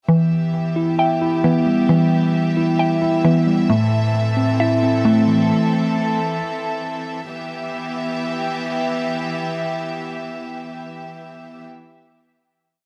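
Eerie and melancholic, this short hip hop piece in E minor moves at 133 BPM with a half-time trap feel. It opens as a breakdown, with a mellow tine electric piano playing a rising and falling arpeggio in eighths, repeated like a sampled loop, filtered and heard through built-in speakers up front. Alongside it, a mallet-like synth pluck repeats a patterned arpeggio in quarters, woody and round with a noise layer, shaded by chorus, a low-pass filter and tape echo. A studio string section holds soft, sul tasto chords with light vibrato, intimate and close, as the harmony shifts from Em to Am and back to Em at 7.3 seconds. The piano drops out at 6.4 seconds and the pluck shortly after, leaving the strings to sustain the final chord until 11.6 seconds. The whole piece sits in a small room with light reverb, its recording carrying a dry, gritty hardware sound.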